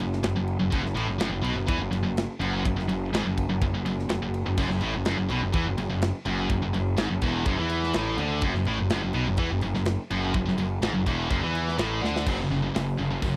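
A growly, fuzz-soaked electric bass sits up front in this epic, aggressive heavy metal piece, playing alongside two high-gain distorted guitars, one of them scooped and pushed forward, that grind out a low, bright riff together. A tight acoustic drum kit with a tight kick, medium-tuned snare, hi-hat, ride and crash drives the straight groove, and a drum fill at 12.0 seconds leads into a brief shift to a power chord at 12.3 seconds. The dry, close 1970s-style studio sound keeps this short cut from a longer track raw and immediate.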